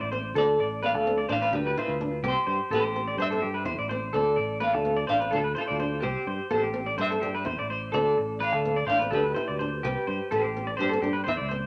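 A bright, twangy clean electric guitar sits up front with spring-reverbed arpeggios in this carefree highlife excerpt, while a hollow-bodied semi-hollow electric guitar carries the melody through tremolo, a round, punchy fingered electric bass holds down the Dm and C changes, and a dark, fingerpicked flamenco guitar adds accompaniment in the background, all set in a wet small room.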